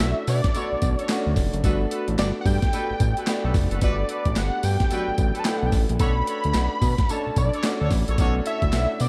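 New jack swing R&B at 110 BPM with a swung sixteenth-note feel, this punchy, slick excerpt rides a gritty, overdriven sampler-style drum kit of thumpy kick, handclaps, hi-hat, snare and tambourine alongside a fat, detuned sawtooth analog bass, both up front. A bold, nasal unison lead carries the melody with vibrato and a diffuse ambient delay over a clear concert grand piano treated with lush chorus, moving from Bm9 to Gmaj9 and back to Bm9 at 6.0 seconds. Tight, vintage horn stabs enter at 0.5 seconds, and a moderate plate reverb soaks the mix in a dreamy haze.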